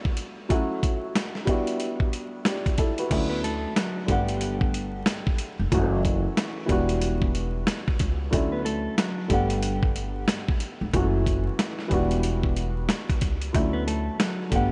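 Confident and nostalgic, this boom-bap hip-hop cut, taken from a longer piece, rides a swung sixteenth-note feel in 4/4. An intimate, vintage upright piano carries the accompaniment from the start, its short-sustaining chords and audible action noise softened by a cassette-tape character and filtering as it moves through Gmaj7, F#m7 and Em7 toward Dmaj7. A gritty, compressed sampler-style drum kit sits up front with a thumpy kick, a medium-tuned snare, hi-hat and crash, sounding as if re-recorded in a large room. At 3.1 seconds a woody pizzicato upright bass enters on steel strings, and at 3.3 seconds a clean, fingered electric guitar adds brief melodic phrases bathed in spring reverb and a diffuse ambient delay, returning in short fragments later on. Light digital ambience and a bed of vinyl crackle give the whole recording a dusty, rolled-off sheen.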